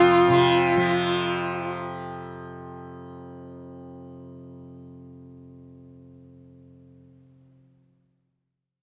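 Indian classical music in a meditative, introspective mood, set in 5/4 with a straight feel and tuned to A4 = 443 Hz, cut from a longer piece. A single bowed violin carries the melody, dark and expressive with vibrato, a soft attack, portamento and a smooth top, sitting up front around F4. It sounds only briefly, from 0.0 to 1.7 s, before falling silent. Beneath it a tanpura holds a drone between F2 and F3 through 7.8 s, its softly plucked strings bright, buzzing and shimmering, also placed close to the listener. The pair were captured playing live together in a small room whose moderate reverb lends a short, intimate tail.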